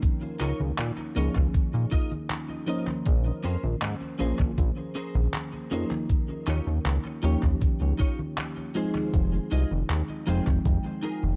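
A woozy, nostalgic vaporwave fragment at 79 BPM in F minor opens with a soft, round FM electric piano, lightly chorused and tape-echoed, alongside a thumpy, up-front electronic kick and an overdriven, detuned 8-bit drum machine of congas, handclaps and hi-hat, both carrying gritty 12-bit sampler texture. At 0.4 seconds a glossy, tube-saturated synth bass with a plucky filter and a clean, picked electric guitar riff bathed in ensemble chorus join in. The dry, echo-heavy mix drifts through Db6/9, Bbm9, Eb9 and Fm7 before the kick drops out at 10.8 seconds.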